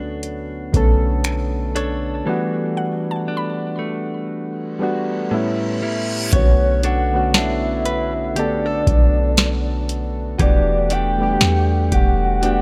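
This contemporary R&B excerpt has a late-night, sensual mood, with a swung sixteenth-note feel over a Bm9, Em11 and A7 progression. Soft, round electric-piano-like synth keys with chorus and a clean, direct-recorded electric guitar playing arpeggios carry the harmony from the start. Beneath them sits a deep, boomy 808-style bass. A booming analog drum machine stands up front with a crisp snare, metallic hats and finger snaps. The drums fall silent at 2.3 seconds while the keys, guitar and bass carry on. A woody, bright mallet-like synth pluck with chorus and delay enters at 2.8 seconds, and an electronic reverse cymbal sounds from 5.0 seconds until the drums return at 6.3 seconds. A full, dark octave-layered synth lead then carries the melody with chorus, tremolo, vibrato and delay, all set in a digital ambience.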